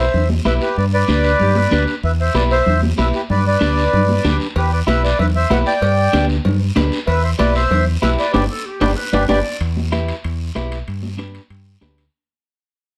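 Cumbia at 190 BPM in E minor, danceable and passionate, where a reedy, up-front accordion carries the melody until 9.4 seconds over a round, deep fingered electric bass, clean picked electric guitar, bright high-tuned congas and a raspy, distant guiro, while a clear, roomy clarinet adds brief vibrato-laden second lines, ringing cowbell and timbales join in the background from 4.6 seconds, and a band accent leads into a fade-out from 9.6 seconds in this dark, lightly reverberant production cut from a longer piece.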